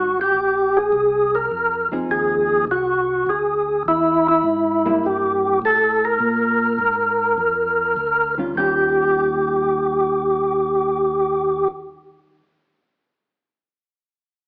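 Swinging at 102 BPM in 4/4, this soulful soul jazz organ trio excerpt in Eb major has a percussive tonewheel organ up front carrying the melody with a fat, key-clicking tone, light overdrive, chorus vibrato and a slow rotary speaker, while a mellow organ bass line sits round and dark beneath it with the same overdrive, vibrato and slow rotary. A clean, compressed hollow-body jazz guitar comps quietly underneath through changes from Abmaj7 and Fm7 to Edim and Bb7, landing on Eb9 at 8.6 seconds, and it rings on alone after the organs stop at 11.7 seconds until 12.4 seconds. The band plays live in one room with a moderate large-studio reverb and a thin AM radio character.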